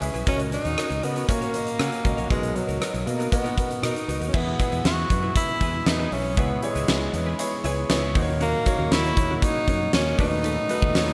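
1980s-style pop at 118 BPM in a straight 4/4, moody and nostalgic, where a clear, close-miked tenor saxophone carries the melody up front from 0.3 seconds over a huge arena drum kit with a fat snare, punchy kick and bright cymbals, a warm fretless bass, a brilliant concert grand piano with deep bass and short sustain, and a faint, clean twelve-string electric guitar riff, joined at 4.3 seconds by a very quiet, reedy, breathing pedal harmonium holding sustained chords as the harmony moves from D#m7/C# and Bmaj7 into E, C#m7 and D#m7, all within a moderate scoring-stage reverb in this passage cut from a longer piece.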